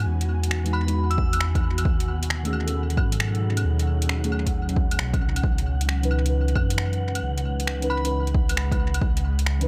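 Future garage at 134 BPM in C# minor, this excerpt feels rainy and ghostly, its sixteenths swung and its harmony drifting from Emaj9 to B13/D# and on to C#m9. A dark, detuned saw bass rumbles and beats beneath everything, tube-saturated and pumping against the sidechain, while an ethereal, airy pad holds sustained chords through ensemble chorus and its own reverb. Muted, felt-like synth keys add soft, warbling accompaniment with chorus and dub echo, and a breathy, wind-like tuned noise texture sits far in the background on a single high note. A deep house kit of claves, finger snaps and metallic hi-hats enters at 0.2 seconds, overdriven and treated with studio reverb and tape echo, and a punchy, up-front electronic kick arrives at 1.2 seconds. A crystalline FM bell carries brief melodic fragments near the start and again around 7.9 seconds, its chorus and dub echo adding to the echo-heavy digital ambience of the mix.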